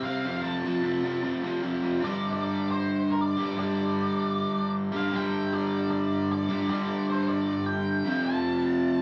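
A straight 4/4 rock pulse drives along at 154 BPM in this swaggering, raw excerpt. An up-front, bright, double-tracked overdriven guitar picks a low riff with spring reverb, while a dark octave-fuzz lead sits lower in the mix, picking a melody between Bb4 and A5. The band plays live in one large, wet-sounding studio room, and the harmony moves from F to G5 at 2.0 seconds before returning to F at 8.1 seconds.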